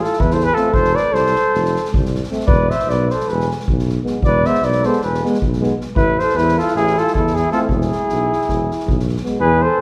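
A restless 9/8 pulse at 311 eighth-note beats per minute drives this virtuosic Balkan brass band piece in E Phrygian dominant, with a street-band drum kit's boomy kick and medium-tuned snare ringing airy and polished from the first second. A dark, punchy trumpet with light vibrato carries the melody up front, joined by a distant, roomy flugelhorn on a second line, while a soft-attacked tuba anchors the bass from 0.2 seconds and a clear trombone and vibrato-touched euphonium sit in the background as accompaniment from 0.6 seconds. The chords move from Am through F to E, all bathed in the lush reverb of a recital hall, in this short cut from a longer piece.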